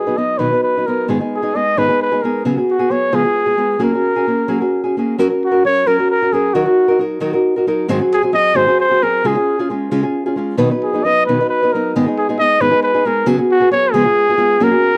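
In a rubato 6/8 lilt at 89 BPM in F# major, this romantic, festive mariachi passage from a longer piece sets a mellow, punchy trumpet up front, singing a classical-style solo melody with light vibrato, over a small, fingerpicked nylon-string guitar in a dry, close 1970s-style small room, as the harmony drifts through B, G#m and C#7sus4 before settling on F#add9 at 3.8 seconds and then restarting the phrase.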